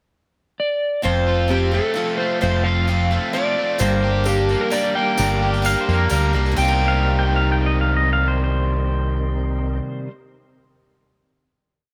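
Dusty and reflective, this short folk rock and heartland rock piece moves at 130 BPM in a straight 3/4 feel in C minor. A dark, slightly broken-up electric slide guitar opens the pickup bar with a motif-based melody. At 1.0 seconds the band enters on an F chord. A round, punchy fingered electric bass sits up front with a dotted figure. A bright, boxy acoustic guitar plays swing-style folk strumming in open chord shapes. A double-tracked, scooped overdriven electric guitar picks arpeggios over them. At 3.8 seconds the harmony moves to G minor, and a tonewheel organ slips in behind the band with a sustained pad, key click, chorus vibrato and a slow rotary speaker. A jingly tambourine joins it in the background. At 5.7 seconds a clean, compressed pedal steel guitar adds volume swells and answering blues licks, and at 6.6 seconds the piece settles onto a closing C minor seventh chord, all in light reverb.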